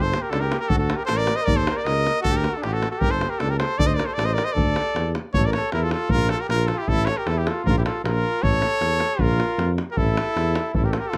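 A swung 2/4 pulse from a tight, band-limited, vintage-sounding davul drives this fiery, restless Balkan brass band excerpt, where an up-front trumpet sings the classical-style melody through plate reverb, a clear flugelhorn with light vibrato adds a second line, and a mellow, up-front tuba holds the bass as the music moves into a new section at 5.3 s.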